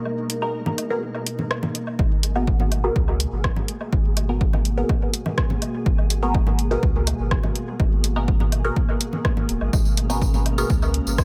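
A straight 4/4 pulse at 124 BPM drives this cavernous, meditative dub techno in G# minor, moving from G#madd9 to G#m9, where a warbling, lo-fi tape-like pad with chorus and sampler grit and a flickering, grainy texture in the background breathe under sidechain pumping, dub-echoed woodblock and congas sit beside a punchy analog drum machine's up-front hi-hat and rim click and a muted, nasal filtered chord stab with phaser, before a round sine sub bass and electronic kick drum arrive at 2.0 seconds and a jingly, close tambourine joins at 9.7 seconds.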